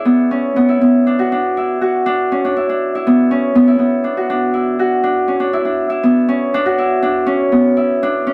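Rock in a straight 6/8 at 80 dotted-quarter beats per minute, this brief, bright and wistful fragment features a solo acoustic Celtic harp, fingerpicked, ringing and up front in light reverb, moving from C#m7 to Esus2 before shifting to a new section at 6.5 seconds.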